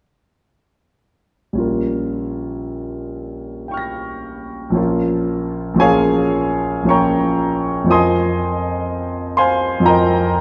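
A clear, open concert grand piano plays alone from 1.5 to 10.4 seconds, its deep bass and up-front presence spanning Bb1 to Bb6 in a mysterious, hazy impressionist piece in Bb dorian. The rubato 3/4 pulse drifts between 53 and 64 BPM, with harmony moving from Bbm6 through Bbm7 to a suspended F7sus4 at 7.9 seconds, and a new passage beginning at 4.8 seconds. A dark production and wet concert hall reverb surround this brief fragment cut from a longer work.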